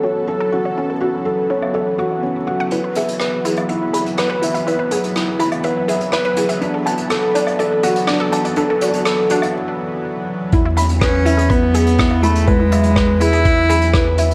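Piano and strings electronica, tender and luminous, in which a mellow felt-muted upright piano riff sits up front over a lush detuned pad, a bright sawtooth pluck arpeggio filter-swept in the background, and a round sine sub bass, all in a wet recital-hall reverb, as soft brushes enter at 1.6 seconds and the build-up breaks into a drop where a thumpy electronic kick arrives at 10.5 seconds and a reedy, close gut-string cello takes the melody at 11.0 seconds.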